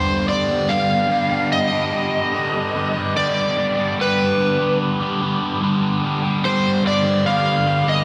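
Mysterious and trippy, this short rock fragment moves at 73 BPM in a straight 4/4, resting on a G chord in G major for its full 8 seconds. An overdriven slide guitar carries the melody up front, its fingered lines ringing between B4 and F5 through an analog delay. Beneath it, a crunchy, double-tracked electric guitar picks a riff from G2 to G4, its bright, gritty tone colored by a phaser. In the background, a string machine set to cellos holds sustained chords with a slow attack and long release, its full-bodied, vintage sawtooth sound thickened by a sub octave and ensemble chorus. The mix is echo-heavy, with light reverb and a small room ambience giving the hazy piece a close, enveloping feel.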